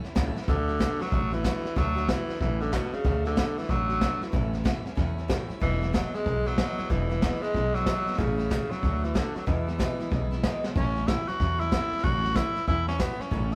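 This upbeat, rollicking rockabilly excerpt opens with a brushed vintage drum kit, a pizzicato upright bass and a picked steel-string acoustic guitar all sounding at once, swinging at 187 BPM in A major. The drums sit up front with a punchy kick, a medium-tuned snare and hi-hat played with brushes, their tone dark and rolled-off on top, while the bass thumps and growls with a woody character low underneath. Tucked into the background, the dreadnought guitar picks bright, full-bodied accompaniment through chords moving between D, A and E. At 0.5 seconds a raspy tenor saxophone takes the solo melody up front, its gritty tone carrying scooped notes and light vibrato. A drum fill at 10.6 seconds sets up a repeat of the opening section, and the whole take has a rough rehearsal-room feel inside a moderate stone-room reverb.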